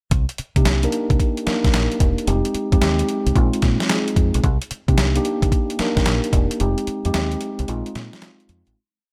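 A gritty, pitched-down boom bap drum kit with a thumpy kick and clap-layered snare drives this confident, punchy new jack swing R&B piece at 111 BPM in a hard 16th-note swing, alongside a dark, round fingered electric bass playing a bouncy synth-funk line with muted ghost notes and chromatic approach notes, while a mellow tine electric piano enters at 0.6 s with syncopated rootless chord stabs over a Cm9, Fm7 and Bb9sus4 progression, all set in digital ambience until a break and fade-out from 6.6 s.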